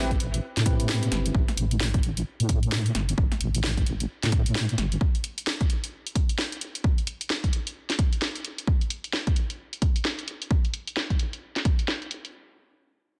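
UK garage in a two-step garage style, this moody, soulful clip in A minor moves at 131 BPM with a swung 16th-note feel, opening on an Am7 chord as a bell-like tine electric piano plays stabs through chorus, delay and a filter sweep until 1.3 seconds, while a deep, wobbling sawtooth bass with chorus holds down the low end until 5.0 seconds. From there the harmony drops away, leaving a punchy, overdriven electronic kick, which runs until 11.8 seconds, and a house kit with a cracking snare and bright hats, which carries the groove until 12.3 seconds. The dense, heavily limited mix is dry and up front, with only a small room ambience on the drums.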